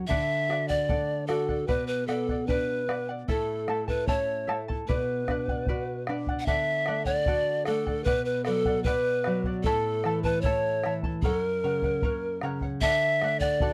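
Dry and close with only a light touch of reverb, this recording has the feel of a 1970s studio session, cut from a longer Andean folk piece in B minor at a steady 75 BPM in straight 2/4. The mood is melancholic and earthy, carried by a breathy, bright bamboo pan flute that sits up front from 0.1 seconds, its reedy, tongued notes marked by a little chiff and vibrato. Beneath it, a fingerpicked nylon-string guitar in a classical style lays down the low harmony, with the occasional finger squeak audible. A charango adds a shimmering layer from its double courses, some strung in octaves. The bombo gives a deep, dark pulse that sounds as if it were played in a small room. The same section is played twice, the second pass beginning at 6.5 seconds and turning to an F# chord at 11.2 seconds before settling back on D.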